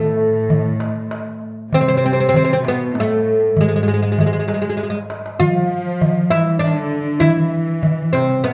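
A bright, woody fretless oud carries the melody from the opening at 0.0 seconds, joined by a close, intimate cello section bowing a smooth second line an octave lower with light vibrato and a soft sul tasto touch. This soulful, melancholic Arabic maqam ensemble piece moves at 98 BPM in 3/4. From 0.5 seconds a distant clay darbuka played with hard hands joins from farther back, with a drum fill at 4.8 seconds, all set in a moderate recital hall reverb within a dark, warm production in this fragment of a longer piece.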